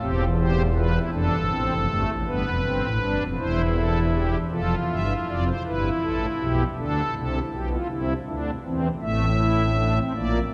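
A dark, warm production bathes this recording in a long, wet cathedral reverb, letting each chord hang in the air. It is a solemn, serious piece of classical music, a baroque-style three-part fugue for pipe organ in 6/8 with a straight feel, heard as a short cut from a longer work. The organ plays alone throughout, drawing on string stops with a celeste that gives its soft tone a shimmering, romantic quality, and it sits up front despite the spacious acoustic. Its range stretches from deep bass notes up into the treble, filling the space from below. The first passage moves through a measured cadential progression, and at about 4.5 seconds a second passage begins, unfolding gently through related chords before the recording ends near 10.4 seconds.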